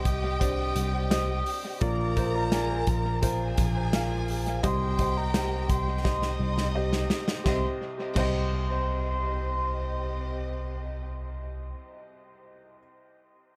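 This bittersweet, dramatic piano-driven pop excerpt opens with a soft, octave-layered synth lead carrying the melody high above a lush, bowed violin section and a clear, woody upright piano, all three sounding from the very start. The lead is round and dark, with a detuned sub-octave body, vibrato, and chorus and phaser colouring its sustained notes, while the violins add an expressive second line beneath it. A mellow tine electric piano holds down the bass up front, and a modern acoustic drum kit with a punchy kick, medium-tuned snare, hi-hat and crash cymbal drives the straight groove. The harmony moves from C minor to B-flat and back, and a drum fill from 6.0 to 7.5 seconds leads into a new section, after which the drums drop out at 8.4 seconds. Dub echo trails the lead, violins, piano and drums in a light, small-room mix, and the upright piano rings on alone to close at 12.8 seconds.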